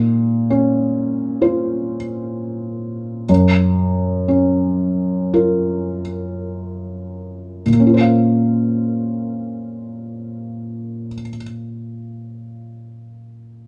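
A felt-muted upright piano, intimate and up front with audible action noise, plays a melancholic, fragile classical fragment of a longer piece in loose rubato, slowing over the first 7.7 seconds as Bbmadd9 gives way to Gbmaj7 before returning to Bbmadd9 at 7.7 seconds, all set in a live room with light reverb.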